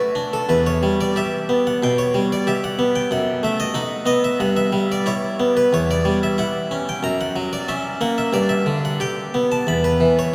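The harpsichord sits close and up front, its plucked single set of strings heard bright and full, while the surrounding space is a vast, echoing cathedral whose long reverb trails behind it. This short excerpt, cut from a longer piece, is a baroque-style suite movement for solo harpsichord, played in a French style. The mood is flowing and radiant, with a rubato feel that loosens the steady four-beat metre. The instrument covers a broad span from E2 up to B5 and plays alone for the full 10.3 seconds. The harmony moves from E minor through B7 over F#, E minor over G, a diminished chord on C#, F# and G before settling on an open E5 at 9.7 seconds.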